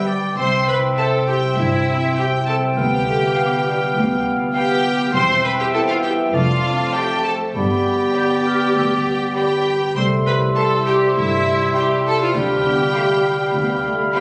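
A straight 4/4 pulse carries this playful, whimsical film cue, a short cut from a longer piece with a mischievous, magical air. A clear violin section sings the melody with smooth, even vibrato, while a second, more distant violin line, a warm solo oboe and a pure-toned silver flute weave supporting lines above; the flute enters at 0.4 seconds with a crisp attack. A lush, focused viola section and a mellow solo bassoon fill the middle. A ringing, fingerpicked concert harp spreads arpeggios across its range, and a rich, close cello section anchors the bass alongside a dark double bass section. From 1.6 seconds a roomy French horn section adds mellow sustained chords, as the harmony moves through C, G7/D, C/E, Dm/F and G, returns to C and then turns to G7/D. The ensemble sits in a scoring-stage reverb but was captured on a phone in the room, and club reverb and compression give the sound a hazy, squeezed quality.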